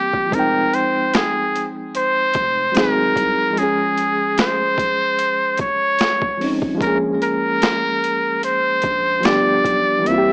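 Lo-fi hip hop in a melancholic, reflective mood, this short cut features a buzzy, breathy muted trumpet up front playing a jazz-style solo with light vibrato and scooped notes over a reedy electric piano with fast tremolo and cassette tape coloring, a gritty, overdriven sampler-style drum kit with a thumpy kick and high-tuned snare entering at 0.1 seconds, and a deep, round sub bass sitting in the background from 0.3 seconds, all moving through Fm9, Ab7, Dbmaj7/F, Bbm7 and G7 under a light reverb and a small-speaker, tape-worn sound.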